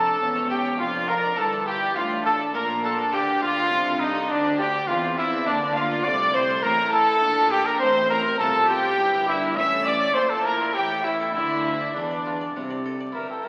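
A clear trumpet leads this stormy, dramatic baroque-style concerto movement, standing up front with a classical-style solo line that sits between D4 and E5. Behind it, two violin sections with a gut-string, period-style sound carry a high melody and a second line, their reedy tone touched by light vibrato and a smooth top. Darker viola and cello sections fill the middle and lower register, joined by a double bass section at the very bottom. A bright, plucked harpsichord with a single set of strings adds accompaniment from the background. The chords move from A7 through D minor and B-flat before a turn toward A7 and a close on D minor at 11.3 seconds. Heard in triple time through recital-hall reverb, the 13.5-second excerpt carries the crackle of a very old 78 rpm record.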